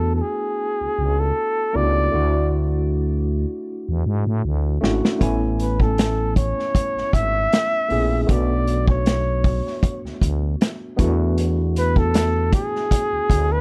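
At a relaxed 78 BPM in 4/4 with a gentle 16th-note swing, this romantic, lush 1970s-style soul excerpt in A major opens with a breathy, whispered flugelhorn carrying an intimate solo melody with vibrato and tape echo, set over a worn, slightly out-of-tune electric piano with light overdrive and a thick, growling FM bass, before a punchy vintage acoustic drum kit with a rolled-off top joins at 4.8 seconds, all in a dry, up-front sound moving through E9sus4, Dmaj9, Amaj7 and Bm9.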